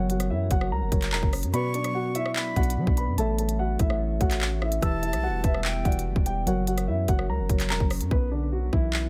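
Menacing and tense, this half-time drill excerpt sets a dark, vintage-toned concert grand piano melody over muted, felt-like synth keys with a filter sweep and a glassy FM pad that sits ethereal in the background. A deep, sine-like 808 bass and an up-front electronic kit of hard-clipped kick, crisp hi-hats, handclaps and rim clicks drive it, with the kick dropping out from 1.5 to 2.4 seconds and the hats falling away at 8.1 seconds. A breathy, close-miked concert flute adds a second line with delay from 1.5 to 6.0 seconds, all within a digital ambience.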